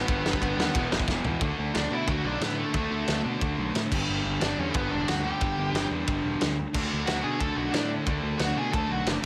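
A straight 4/4 beat drives this rowdy, rebellious punk rock fragment, and a drum fill at 1.1 seconds drops the band into a half-time feel from 1.4 seconds onward. The loose indie drum kit sits up front in an acoustic studio room, with a fat snare, a punchy kick, dark cymbals and a rolled-off top. A growly, overdriven fuzz bass holds the low end beneath two riffing guitars: a bright, compressed distorted guitar set in the background and a sludgy, very quiet overdriven one beneath it. Above them, a bluesy lead guitar carries the melody with distortion and delay. Light reverb lends the mix a touch of air.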